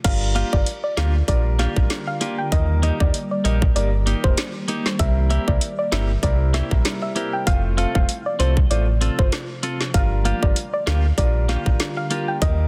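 A swung 97 BPM dancehall groove in 4/4 drives this sultry, tough G minor excerpt, built on an up-front electronic kit with a tight kick, woody snare given soft clipping, metallic hats, rim clicks and crashes, under a deep, full sine sub bass with octave that carries the low end through Gm7, Eb, C7 and F. A soft, round pluck with chorus and tape echo sings the melody over polished grand piano accompaniment that pumps with sidechain, while a clean, twangy electric guitar picks arpeggios from 0.3 to 12.3 seconds. Far behind, an ethereal, airy pad holds sustained chords through ensemble chorus, reverb and phaser, all in a dense, heavily limited modern mix with light room reverb.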